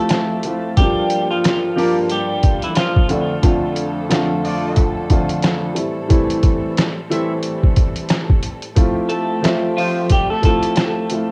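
Boom-bap hip-hop at 90 BPM in G dorian, tough yet reflective, built on a gritty, pitched-down sampler-style kit with a swung 16th feel, thumpy kick, medium-tuned snare, rim clicks and hi-hat set up front. A dark, woody upright piano accompanies up front over smooth bowed strings in the background, while a clean picked electric guitar with harmonic tremolo and tape echo carries the melody at the start and returns at 9.1 seconds. A distant, roomy trumpet section adds echoed stabs from 1.8 to 10.0 seconds, all captured with the character of a home cassette recording.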